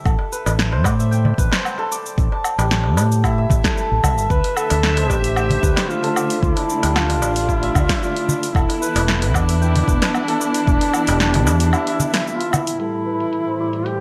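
A round fretless electric bass sits up front with sidechain pumping in this meditative organic downtempo piece, beneath bright, shimmering hammered santur arpeggios through a low-pass filter and delay, a deep electronic kick, a layered deep house kit with a punchy snare, hi-hat, cabasa and woodblock, and a crisp darbuka in the background, while a mellow folk-style duduk melody with vibrato and scooped notes and a dark, lush bowed string section arrive at 4.3 s, a break comes at 11.7 s, and a ringing bronze singing bowl with slow beating enters at 12.8 s as filter sweeps pass over the drums and santur, set in a bright 1980s-style digital production with moderate plate reverb.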